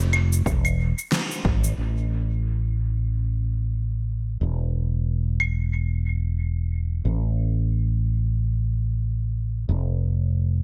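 A dark, round fretless electric bass opens this wistful, smooth sunset chillout piece, heard with tube saturation and lush chorus, alongside overdriven electronic cabasa, claves and a fat, up-front snare treated with low-pass filtering and dub echo, while a punchy, overdriven electronic kick joins only briefly near the start. The swung 4/4 groove hits a band accent at 1.1 seconds, and the percussion stops at 5.6 seconds, leaving the direct-sounding bass alone until the end. The mix carries little reverb but plenty of echo.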